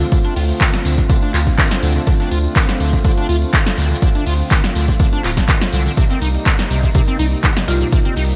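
Raw and hypnotic, this acid house excerpt rides an up-front punchy electronic kick and a deep, thick saturated sub bass that pumps alongside a squelchy, resonant acid bass riff with chorus, delay and a filter sweep, over sustained detuned sawtooth pad chords moving from Dm7 to Cm7 at 6.0 seconds. A punchy analog drum machine's claps, hats and snare, a jingly tambourine and a very quiet, gritty breakbeat kit fill out the groove, and a woody marimba with hard mallets flickers briefly in the background with delay at the very start and again at 7.7 seconds, all in a bright 1980s-style digital mix with light small-room reverb.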